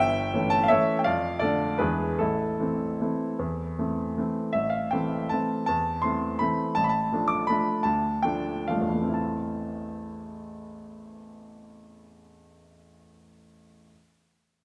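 Elegant and nostalgic, this short classical piano waltz in 3/4 moves with a flexible, rubato feel, taken from a longer piece. A bright upright piano plays alone throughout, its woody, polished tone sitting up front and reaching from deep bass notes up into the high treble. The harmony opens on an A7 over G and passes through D minor and E7 before settling on A minor by 2.2 seconds, with a D minor colour returning later over an A bass. Through the middle of the passage the pace eases, slowing from 6.2 to 9.2 seconds before the music arrives back on A minor. A moderate concert hall reverb lends the instrument a gentle sense of space around its brilliant, present sound.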